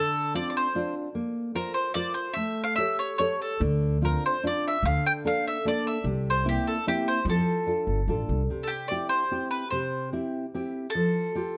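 A lilting three-beat pulse with a straight feel drives this lively, romantic Italian folk serenade, heard as a short cut from a longer piece. Up front, a picked mandolin with doubled strings carries the melody in a woody, warm voice, while a fingerpicked nylon-string guitar accompanies with a deep classical tone, its finger squeaks clearly audible. A pizzicato upright bass with gut strings adds a thumpy low end from 3.6 s until 8.5 s. The harmony moves through Dm7, Bbsus2 and A7, returns to Dm7, then passes through Bbmaj7/D, C7 and F6, before a new section at 8.5 s settles on C and closes on Fadd9. Close, detailed microphones and a light reverb give the trio an intimate, warm presence.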